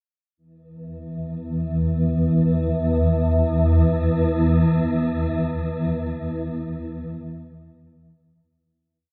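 In free time and tuned to A4 = 436 Hz, this short, unsettling ambient piece is carried by a single swarming drone that enters alone at 1.1 s, a tense, evolving bed of detuned unison sine tones with slow attack, long release and granular texture, sitting up front between E2 and E3 and treated with its own reverb and a phaser, all bathed in a huge, cavernous wash of 7.7-second reverb before a fade-out that begins at 4.6 s.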